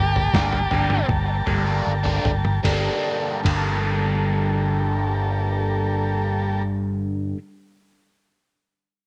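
Lightly reverberant, this dark, mysterious psychedelic rock fragment opens on a fuzzed, distorted lead guitar with tape echo that sounds only until 1.1 seconds, over a buzzy, heavily vibrato-laden combo organ drenched in lush chorus, a round fingered bass, a muffled, thumpy sampler-style drum kit whose kick and snare drop out from 1.8 seconds, and a bright, up-front, double-tracked semi-hollow guitar riff colored by phaser that carries on to the end as the music slows through its first 2.6 seconds.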